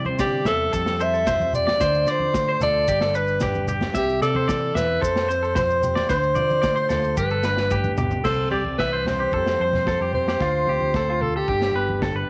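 A sunny, joyful highlife guitar band excerpt at 112 BPM in C major opens with a dark, clean mellow electric guitar and a twangy, slightly broken-up guitar through a small old amp picking bright arpeggios over round, punchy fingered bass, soon joined by low-tuned congas in the background, a gritty, saturated breakbeat kit with a punchy kick and a drum fill from 7.2 to 8.3 seconds, grainy maracas until 8.2 seconds, and an up-front, breathy alto saxophone melody with scooped notes, vibrato and tape echo, all in light studio reverb.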